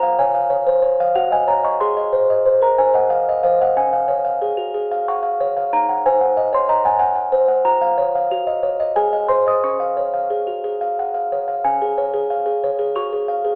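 A straight three-beat lilt carries this dreamy, tender classical lullaby, cut from a longer piece and played entirely by a solo music box that sits up front, its tinkling, mellow tone slightly out of tune as it ranges from Db4 to Eb6. The box sounds large and delicate, bathed in a wet studio reverb and filtered through a narrow, telephone-like sound. Soft harmonies settle under the tune before a new section begins at 11.6 seconds and carries on until the close at 13.6 seconds.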